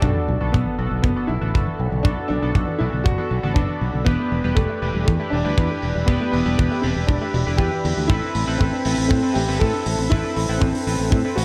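A bright, 1980s-style digital production with plate reverb and a small room ambience frames this danceable, nostalgic italo disco excerpt, which moves through Bm7, Em7 and Amadd9. A boxy grand piano carries the melody with digital delay over a lush, warbling unison pad in the background, very quiet detuned analog pluck arpeggios, and glossy, retro polysynth stabs with chorus and delay. Beneath them sit a fingered electric bass with tube saturation and a tight, up-front acoustic kick, while a low-pass filtered hi-hat enters at 0.3 seconds and an electronic sub drop sounds from 0.1 to 2.0 seconds.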